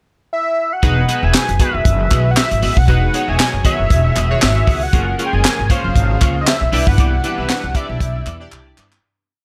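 A fat, detuned analog lead opens alone in a brief pickup at 0.3 seconds, and at 0.8 seconds the band arrives for a smooth, feel-good early-eighties boogie funk verse at 117 BPM in E major, with a swung sixteenth-note feel. The tight funk drum kit sits dry and up front, its high-tuned snare layered with claps over a tight kick and hi-hat, while a woody, pizzicato upright bass drives a fat, syncopated boogie line. A glossy, chorused polysynth plays syncopated rootless chords, a twangy, slightly broken-up electric guitar picks a choppy sixteenth-note riff, and a very quiet, shimmering string machine holds a sustained violin pad. From 1.4 seconds, hollow group handclaps mark the backbeat, and the mellow lead carries a motif-based melody with vibrato. The harmony moves from Emaj9 to F#maj9 and then Cmaj9, the recording sits in a small room with light reverb, and the piece fades out from 7.0 seconds, closing on a drum fill.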